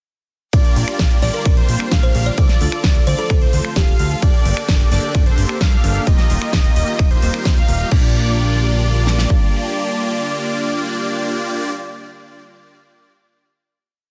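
A dense, heavily limited modern master with digital ambience frames this short, uplifting, anthemic festival progressive house piece in Bb major at 130 BPM in a straight 4/4, tuned slightly flat to A4 = 437 Hz. The big-room dance drum kit sits up front: a punchy four-on-the-floor kick and huge layered snare, with crisp programmed hats, snaps, ride and crash carrying the backbeat. Beneath it, a fat, saturated analog bass drives eighth notes with a filter pluck, while bright, detuned supersaw chords in a dotted rhythm sweep through a phaser and delay. A bold sawtooth unison lead doubles those chords with arpeggios, colored by vibrato, cassette tape and delay. A lush unison pad with chorus swells slowly in the background, and a woody kalimba adds short plucked phrases between 1.2 and 4.1 seconds. The drop runs from 0.5 seconds over Bb6, Dm, Gmadd9 and Ebadd9, all pumping against the kick, before a final Bb6 chord rings from 7.9 seconds to the end.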